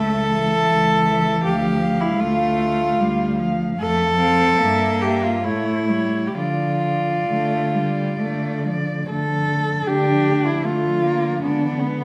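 Solemn and elegiac, this classical excerpt for cello ensemble unfolds in a rubato 3/4, with a dark, woody cello carrying the sul tasto melody above a warm, floating second line set up front, an intimate, airy-bowed accompanying cello and a close bass cello played with vibrato, all four bowed by single players in a moderate recital hall reverb as the music turns to a new section at 9.1 seconds.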